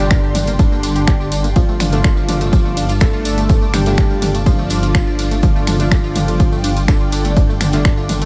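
A short stretch of melodic techno opens at once with a fat, sawtooth-and-square analog lead carrying the melody, its sound roughened by vintage 12-bit sampler grit, gently chorused, echoed by delay and pumping against the beat. Beneath it a bold, warbling polysynth traces a second line very quietly, while a lush unison pad holds sustained chords in the background, thickened by chorus and phaser. A tight sequenced synth spins arpeggios with a plucky filter and a cassette-tape tint, and a nasal synth brass stab punctuates faintly as a menacing detuned saw bass swells low on G1. Up front, a punchy, tape-warm electronic kick drives the 4/4 groove alongside an analog drum machine of finger snaps, hi-hat, ride and toms, with a jingly tambourine tucked behind. An ethereal, wave-folded airy pad drifts in at 0.9 seconds as the harmony moves from Gm to Dm over G, leaving a cinematic, hypnotic mood in light digital reverb.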